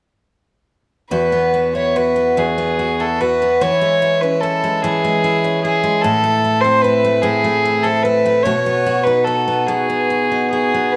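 A moderate recital-hall reverb surrounds this short Celtic slow air, cut from a longer piece, in E major and 6/8 at about 49 BPM with an uneven, rubato feel. A single bowed fiddle carries the wistful melody with a dark, reedy gut-string tone, while a picked steel-string dreadnought guitar accompanies with bright, full-bodied fresh strings and audible finger squeak. Both enter at 1.1 s and move through Esus2, C#m/E, Am and B, carrying the pastoral mood to a close on B.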